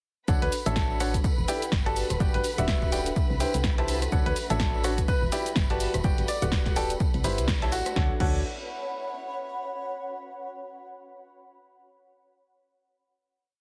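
A joyful piano house piece opens at 0.3 seconds with a clear, woody upright piano riff pumping over a round FM bass, a punchy four-on-the-floor kick, programmed hats, snare and shaker, a distant tambourine and dark, lush strings in the background, while a polished baby grand adds short answering phrases and a cloudy granular pad drifts in at 1.3 seconds and lingers through the final chord at 8.0 seconds, all under a heavily compressed radio sound.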